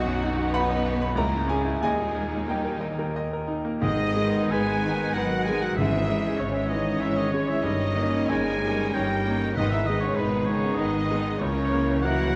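Passionate and brooding, this excerpt from a romantic movement for piano and orchestra moves in a rubato 3/4, with a brilliant, up-front grand piano carrying the melody over lush violins that sing with vibrato and portamento, while violas, rich cellos and focused double basses fill out the bowed string bed. At 3.8 seconds the music opens into a fuller passage as a bright clarinet and a clear oboe add background lines, a dark horn section holds sustained chords, a mellow trumpet section punctuates with stabs, and very quiet timpani join until 10.4 seconds. The ensemble sits in a moderate scoring-stage reverb that lends the distant violins, violas and brass a roomy depth.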